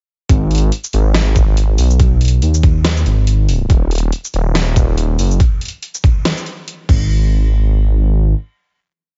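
Heavy and cavernous, this short deep dubstep piece in G# minor runs at 141 BPM with a swung, half-time feel, opening straight into a drop at 0.3 seconds. A dark, detuned saw bass rumbles up front in chopped phrases, while a muffled, thumpy kick and an overdriven, layered drum kit with a huge snare, bright hats, shaker and crash drive the beat until 7.0 seconds. The bass sustains alone into a final hit at 7.1 seconds and sounds until 8.3 seconds, all in a dry, dull mix.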